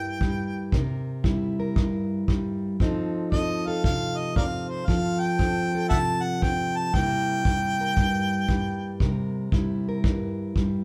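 Recorded live in one stone-walled room with a moderate reverb, this short cut from a longer acoustic country blues piece has a laid-back, rollicking feel at 116 BPM in 4/4, swung on the eighths in C mixolydian, moving from C7 to F7 at 2.8 seconds and back to C7 at 6.9 seconds. Up front, a clear harmonica carries the melody with light vibrato, scooped notes, tongue slaps and a soft attack in a jazz-inflected solo that ends at 9.0 seconds. A dark, boxy fingerpicked parlour steel-string guitar accompanies throughout, and a smooth, tight kick drum played with brushes enters at 0.2 seconds.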